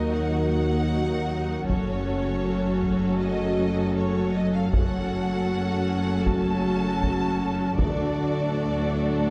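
Distant taiko drums struck with hard sticks boom through a large room from 1.7 to 8.5 seconds, driving this dramatic, epic orchestral film-score fragment in a straight 4/4. Above them, a focused studio violin section carries the melody with vibrato and a smooth top, while a second, more distant violin section plays a supporting line. Lush violas fill in the accompaniment, and a close cello section anchors the bass in the background alongside the double basses, bowed with light vibrato. Dark French horns with a soft attack and a very quiet section of trombones hold sustained chords. The harmony moves from E-flat minor to G-flat minor and lands on D near the end, all bathed in a wet scoring-stage reverb with a dark, warm production.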